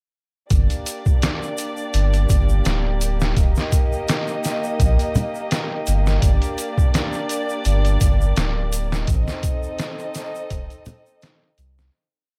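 Melancholic and hypnotic, this short trip hop piece rides a slow, lightly swung groove built on a gritty, pitched-down sampler-style drum kit with a thumpy kick and tape-warm, compressed breakbeat loops, sitting up front beside a deep, round dub sub bass. A dark, veiled violin section played con sordino holds sustained chords with light vibrato, while close acoustic shaker and low conga add loose texture in a small room ambience. The chords move from Gm through Eb and back to Gm before landing on Adim as the piece fades out from 8.1 seconds to its close at 11.9 seconds.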